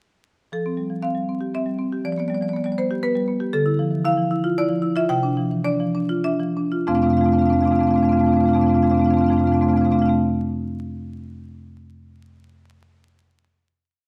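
Playful and warm, this brief contemporary classical piece for solo marimba in F major moves in 3/4 at 93-121 BPM: the woody, bright padauk bars, struck up front with medium hard mallets, spin a single-line melody and rippling figuration over chords such as Fadd9, G/F and Dmadd9, slowing from 2.8 s before settling at 6.9 s on an F6 chord, all captured by close, detailed microphones in a stone room with moderate reverb and vinyl crackle.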